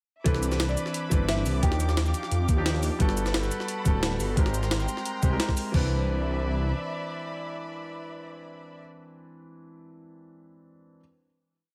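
A rolling two-step breakbeat drives this short, dreamy liquid drum and bass piece at 175 BPM in 4/4, built from a gritty, pitched-up sampler-style kit with a high-tuned snare, hi-hat, shaker and crash over a thumpy, compressed electronic kick that sits up front, both running from 0.3 to 5.8 seconds. Beneath them a menacing, detuned saw bass plays long gliding notes with a saturated filter swell, carrying the drop through chords of Cmaj9, Ebmaj9, Gmaj9 and Abmaj9 in C lydian. A grand piano holds chords with syncopated pushes and long sustain through a tape echo, lasting longest of all until 11.0 seconds. Above, a dark chamber string section bowed with vibrato forms a smooth, sidechain-pumped pad, while a buzzing, woody marimba adds short answering phrases through dub echo in the background, only until 2.1 seconds. After the drop the piece settles onto a final Cmaj9 chord at 5.7 seconds, the strings holding until 8.8 seconds as the piano rings on, all wrapped in light reverb.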